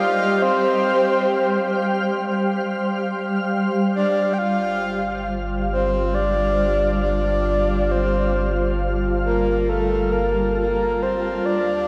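A breathy, flute-like synth lead with gentle vibrato sings its melody over an ethereal, detuned pad of sustained chords moving from F5/G to G5, both veiled in chorus and shimmer reverb, before a deep, round sub bass enters at 4.4 s beneath this melancholic, reflective ambient passage at 68 BPM, all of it set in a vast, wet cathedral reverb.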